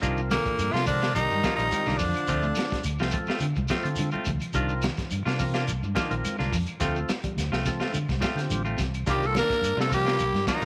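A lightly reverberant mix opens this driving, defiant afrobeat excerpt. A gritty breakbeat kit with a high-tuned snare and tight kick sits over a dark, round fingered bass, while a grainy shekere, quiet bright congas and faint woody claves fill in the percussion. A very quiet clean guitar plays arpeggios, a bright semi-hollow guitar adds stabs, and a full tonewheel organ with key click and slow rotary speaker holds the accompaniment behind them. Up front, a raspy, punchy tenor saxophone carries the melody from 0.3 s and returns at 9.1 s, with a whispered, breathy alto saxophone and a brilliant, tight trombone section adding second lines over the alternating Cm11 and Dm7 chords.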